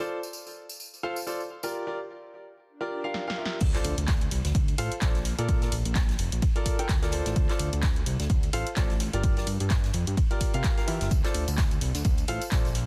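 Bittersweet and energetic, this piano house excerpt moves at 128 BPM in D minor with a 57% swing on the sixteenths, cycling through Dm7, Gm7 and Bbmaj7 chords. A bright, brilliant grand piano with a vintage edge and long sustain plays the riff from the start, pumping against the sidechain and trailed by a digital delay, with a small-room tambourine adding shimmer early on and again near the close. A very quiet electronic swell rises from 2.8 seconds while a punchy analog drum machine fill leads into the drop at 3.6 seconds, marked by a soft impact. From there an up-front electronic kick, re-recorded in a large room, anchors the groove alongside a fat, detuned sawtooth bass with a filter sweep and fast attack that also pumps with the sidechain. The drum machine's handclaps join its hi-hat, snare and crash, which sit behind a low-pass filter, while an airy, polished big-band kit with dark ride cymbals and a softly clipped snare swings quietly in the background. 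The whole is glued together by small-room ambience and a dense, heavily limited modern master.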